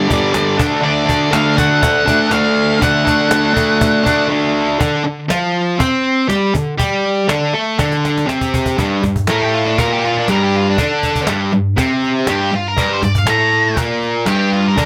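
The double-tracked fuzz guitar sits up front in this raw, swaggering garage rock excerpt, its bright, compressed riff running the whole way at 120 BPM in a straight 4/4. A darker octave-fuzz lead guitar carries the melody from the start, drops out at 4.3 s for a brief break, and returns at 9.3 s as the solo unfolds over the settled G minor of the closing section. A snappy cajon with snares, recorded with a small-room sound, keeps time beneath both guitars and adds a fill just before the key arrives at 8.8 s. A G power chord and a D chord open the piece before it moves toward the minor tonality, all set in a moderate club reverb. The recording is cut from a longer piece.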